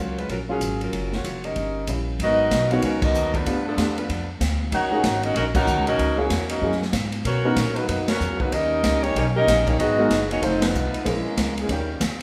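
A mellow saxophone section carries the melody up front in this swinging, brassy big-band jazz excerpt, its smooth top and vibrato wrapped in plate reverb. Beneath it, a baby grand piano accompanies with an intimate, natural tone and short sustain, its action noise audible, while a woody, growly upright bass is plucked on steel strings with a thumpy low end. The acoustic drum kit enters at 0.2 seconds, airy and polished, with dark cymbals, a medium-tuned snare and a punchy kick. A brilliant trombone section with light vibrato arrives at 1.4 seconds as a second line set in the background, also touched by plate reverb. The band punctuates the passage with several accents over rich, extended jazz harmony, all heard through a rough home-demo mix with a wet studio ambience.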